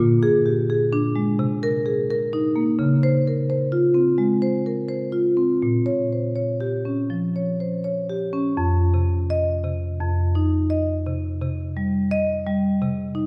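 A lone marimba played with medium hard mallets opens this reflective, flowing contemporary classical passage, cut from a longer piece. Its tone is full and warm, reaching from the low register up into the upper middle of the instrument. The phrasing moves freely in an unhurried rubato over a steady four-beat metre. The first section moves through a gently searching chord sequence of Bb7, Cm7 and Dbmaj7 before settling on Bbm6. At 8.6 seconds a second section begins, built on a bare F5 before turning to C minor. A recital hall reverb with a long, wet tail surrounds the instrument and gives the listener a sense of sitting further back in the room.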